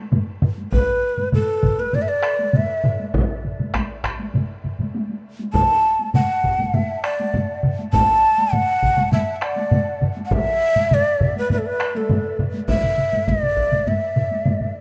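A breathy, hollow shakuhachi with vibrato and a chiffy attack sits up front carrying the melody from 0.7 seconds over four layered taiko ensembles (one struck with hard sticks and a vintage, band-limited tone, one with heavy sticks in a live room, one heavy and close and dry, and one with hard sticks in a distant large room) in this powerful, driving traditional taiko piece at 100 BPM in 4/4, cut from a longer work and bathed in huge ambient reverb.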